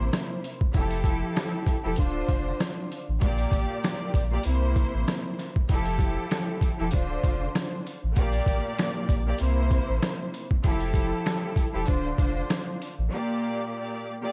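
A lush, bowed string section with vibrato, colored by cassette tape and filtering, opens this moody, dark boom-bap hip-hop excerpt in D minor at 97 BPM alongside a round, mellow dub sub bass and a gritty, compressed, pitched-down sampler drum kit with a thumpy kick, all over a cycling C7, Fmaj9, Dm7, Bb6 progression with a 16th-note swing and vinyl crackle throughout; very quiet, dry finger snaps join at 6.3 seconds, and the drums drop out at 13.0 seconds and the bass at 13.1 seconds for a brief break where the strings play alone.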